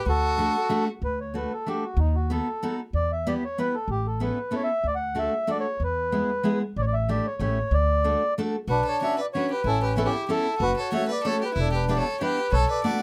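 Closely miked and nearly dry, this whirling, bittersweet musette waltz in 3/4 at 188 BPM sets a reedy, round accordion melody up front over woody pizzicato upright bass and full-bodied picked steel-string acoustic guitar, while a clear, focused bowed violin with vibrato sounds briefly at the start and returns as a second line at 8.7 s, when the music turns from D major to B minor.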